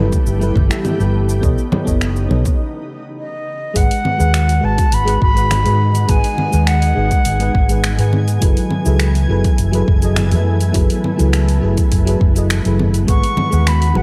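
A straight 4/4 groove at 103 BPM drives this blissful, relaxed sunset chillout excerpt, built on a deep, layered electronic kick and a deep house kit of cabasa, congas, finger snaps and hi-hat, both produced and re-recorded in a small room. Bright, damped congas sit close and dry in the background, falling out at 2.6 s for a short break before the second section arrives at 3.8 s. Up front, a dark, round, punchy hollow-body short-scale electric bass is played fingered in the low register. A soft FM electric piano with a noise layer, chorus and tape echo supplies full-bodied, decaying accompaniment, while a shimmering, ethereal pad, detuned and granular with an octave-up shimmer, chorus and its own reverb, sustains chords moving from G69 and B9 to G#m7 and F#m11. From 3.2 s, an airy, distant concert flute with a straight tone, tape echo and vintage 12-bit sampler grit carries the melody, and the mix sits in light reverb.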